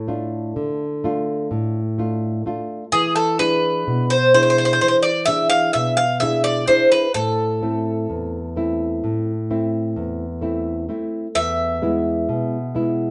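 Greek folk in a wistful, dark mood at 128 BPM in 9/8, this brief cut from a longer piece features a bright, metallic, double-strung bouzouki picking the melody up front over a full-bodied, thumb-plucked nylon-string guitar accompaniment with a deep classical tone, both playing throughout as a live band in one room with a wet studio reverb and a soft top end, moving from Dm through E7 and Am before settling on E at 11.4 s.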